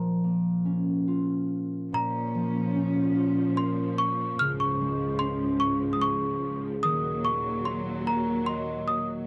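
Wistful and gentle, this short excerpt from a children's lullaby in a rubato waltz time pairs a worn, bell-like celesta carrying a sweet, slightly out-of-tune melody with a concert harp whose fingerpicked accompaniment rings out up front. At 1.9 seconds a lush string section enters beneath them with smooth, vibrato-rich sustained chords that sound somewhat distant. The dry, close recording has a 1970s studio character and a small-room ambience, with the harmony moving from Bbm through Db to Ebm.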